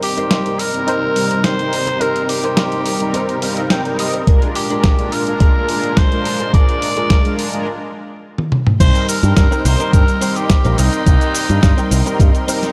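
Sleek and sensual, this nu-disco passage opens with a breathy, raspy tenor saxophone melody over mellow, detuned synth brass with chorus and slapback echo, lush bowed strings pumping softly in the background, and a dusty, tape-warm soul drum kit of snare, hi-hat, shaker, toms and crash. A twangy, compressed clean electric guitar riff sits behind them, slipping in a fill at 3.1 seconds, before a gritty, thumpy electronic kick drum arrives up front at 4.3 seconds. After a short break and drum fill, the drop at 8.8 seconds brings in a bright picked electric bass with an envelope filter, all set in a light digital ambience.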